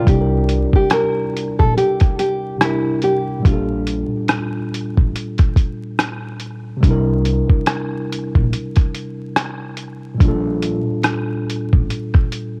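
Lo-fi hip hop at 71 BPM in a swung 4/4, tuned slightly flat to A4 = 437 Hz, this nostalgic, melancholic excerpt opens with a full-bodied, fingerpicked nylon-string guitar melody that drops out at 4.7 seconds, while a worn, slightly out-of-tune tine electric piano, a woody pizzicato upright bass on gut strings, and a compressed, pitched-down, muffled sampler-style drum kit with a thumpy kick, hi-hat and rim click carry the alternating C7 and Gm7 chords; the guitar, piano and drums bear a cassette-tape coloring, and the mix sits in light reverb and small-room ambience under a layer of vinyl crackle.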